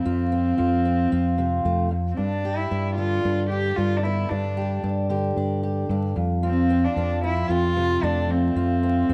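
A straight 4/4 pulse at 113 BPM carries this nostalgic indie folk excerpt, where a reedy, nasal cello with light vibrato sings the melody over fingerpicked steel-string acoustic guitar with audible finger squeak and a dark, round fingered electric bass entering at 0.1 seconds, all set in a small room with light reverb and vinyl crackle giving it the rough feel of a home demo as the chords move from F5 to G5 and back to F.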